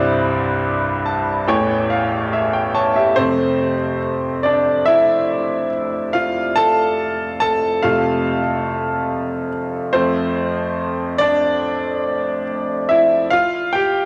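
A lush hall reverb and the soft haze of a home cassette recording frame this longing, heartbroken pop fragment at 71 BPM, where a bright grand piano, intimate and up front with audible action noise, long sustain, cassette tape colour and tape echo, plays a fill from 0.6 seconds over Cadd9 and A chords before carrying a brilliant solo over F from 3.2 seconds, moving into a chordless stretch at 13.3 seconds until the cut at 14.1 seconds.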